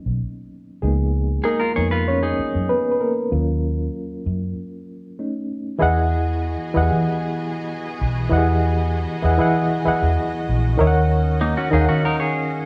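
A moderate studio reverb surrounds a band playing live in one room, in this silky, cinematic soul passage cut from a longer piece, moving at 96 BPM in a straight 4/4 and tuned a touch below standard pitch. A reedy, clean electric piano with fast tremolo sits up front and takes the lead for the opening 5.8 seconds, over rootless G#m11 and C#13 colours, before the band pauses at 4.6 seconds. A dark, foam-muted vintage fingered bass, round and punchy, anchors the harmony. A compressed semi-hollow electric guitar plays a short hollow-body riff near the start and returns at 11.4 seconds. When the second section opens on Emaj7, a distant symphonic string section enters with smooth, bowed sustained chords and light vibrato, adding a lush cinematic sheen beneath the band.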